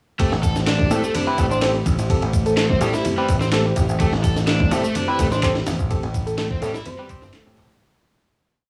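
A straight 4/4 breakbeat groove at 126 BPM drives this short, energetic and raw breaks piece in A minor, built on a looped, edited break from a sampler-style kit that sits up front with a thumpy kick, high-tuned snare and ride cymbal, pitched up and gritty. An electronic shaker and handclap layer rides over the break, while distant, bright congas join at 0.8 seconds, very quiet in a large room. Beneath it, an overdriven picked bass plays a skipping, syncopated line, and a dark, double-tracked overdriven guitar repeats a 32-step riff through analog delay. A barky tine electric piano punches syncopated close-voiced stabs through a combo amp, and a deep, nasal analog pad holds a sustained Am7 chord very quietly underneath. From 1.5 seconds a sparkling, bell-like FM electric piano adds short answering phrases, coloured by chorus, a telephone filter and delay. The whole track stays in a drop from start to finish with a fade-out from 5.3 seconds, and its dry, cassette-tape hardware sound carries light reverb and small room ambience.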